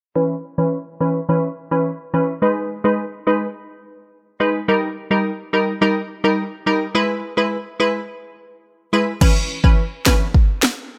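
Dancehall at 106 BPM in a straight 4/4, this short cut from a longer piece has a sultry, hypnotic mood. A digital wavetable chord stab carries the opening alone from 0.2 seconds, its crisp, detuned hits with a fast attack and short decay sitting up front, shaped by a low-pass filter and sidechain pumping. A filter sweep runs across the stab through the first stretch as the chords move from C#m7 to G#m, D# and E. At 9.2 seconds an electronic afro-pop drum kit arrives with a deep kick, sharp snare, handclaps and crash cymbal, sitting forward in the mix as the harmony returns to C#m7. The stab's bright, plucky edge and the produced punch of the drums sit in light reverb.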